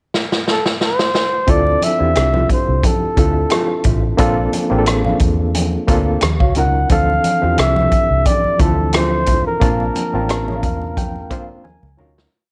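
A vintage drum kit opens this lush 1970s-style soul piece with a fill, its punchy kick and medium-tuned snare up front, and a breathy, whispered flugelhorn soon carries an intimate, motif-based melody with light vibrato over a smooth, cinematic groove at 89 BPM in D minor. At 1.5 seconds the verse arrives as a gritty, barky reed electric piano with fast tremolo plays rootless chords through Dm9, Bbmaj7 and Ebm9, a round, foam-muted fingered bass plays a warm melodic line with ghost notes and chromatic approach notes, a mellow guitar with spring reverb fingers soft sixteenths in the background, and distant congas add a bright, syncopated groove. The track fades out from 9.6 seconds as the electric piano slips in a short fill and the drums close with one more.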